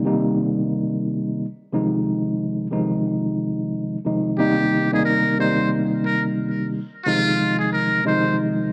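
Hip hop at 90 BPM in F minor with a swung, tough and gritty feel, opening on a mellow, clean tine electric piano that carries the Cm7 and Fm7 chords alone until a buzzy, breathy trumpet with a metal mute enters up front at 4.4 s with a brilliant, thin jazz-style solo line touched by analog delay, all colored by cassette tape, filtering, a moderate spring reverb and small-room home-recording ambience.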